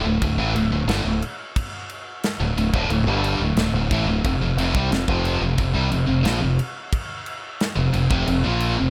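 A double-tracked, high-gain electric guitar opens this short heavy metal excerpt together with a growling fingered bass, both sitting up front in a relentless, epic riff. The picked guitar carries a bright, distorted edge, while the overdriven bass adds a punchy, amped low end beneath it. A modern acoustic drum kit joins at 0.2 seconds with crash cymbal, a tight kick and a medium-tuned snare, keeping a straight feel in four. The harmony moves from a D5 power chord to F5 at 4.2 seconds, and the whole passage stays in one section until it cuts off near 8.9 seconds. A small room ambience gives the kit a close, contained sense of space.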